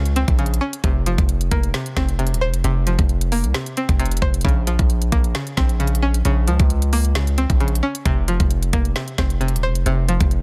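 A dense, heavily limited modern mix set in digital ambience carries this dark, melancholic trap excerpt, moving at 133 BPM in a half-time feel in Bb minor over a sway between Bbmadd9 and Fsus4. A distorted, saturated 808-style bass sits up front with an aggressive, heavy weight, alongside an electronic trap kit of knocking kick, woody snare and crisp hi-hats. Behind them, a twangy, string-like resonator pluck with chorus and a filter sweep adds bright, quickly decaying accompaniment throughout.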